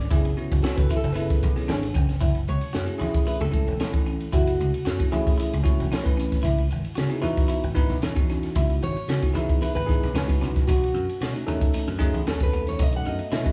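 A straight 4/4 groove at 114 BPM drives this slick, intense electric jazz fusion excerpt in F# dorian, cut from a longer piece. The crisp, up-front drum kit, airy and polished, sets the pulse with punchy kick, high-tuned snare, hi-hat and ride, while a dry thumbed slap bass adds a foam-muted, direct low end. A bell-like tine electric piano and a clean, picked electric guitar placed in the background supply stabs and accompaniment over chords moving from F#9sus4 to F#m9, C#m7 and B7. The bright, full-bodied nylon-string guitar carries the melody from the start, and from 2.2 seconds it takes a fingerpicked solo with audible finger squeak, pausing briefly before returning at 8.8 seconds. A very quiet, deep and moody sawtooth pad slips in at 12.0 seconds with slow-attack sustained chords. The band plays live in one room, with a moderate large studio reverb around the sound.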